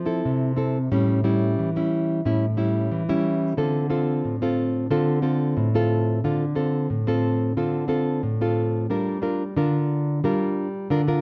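A worn, warbling cassette sound with drifting pitch and a wet large-studio reverb colors this bittersweet, yearning samba fragment in D minor at 90 BPM. A lone nylon-string guitar, fingerpicked in a classical style and placed up front with a warm tone, carries the whole piece, moving from Fmaj7 through A7 to Dm7 before settling onto Gm7 at 8.9 seconds as a new section begins.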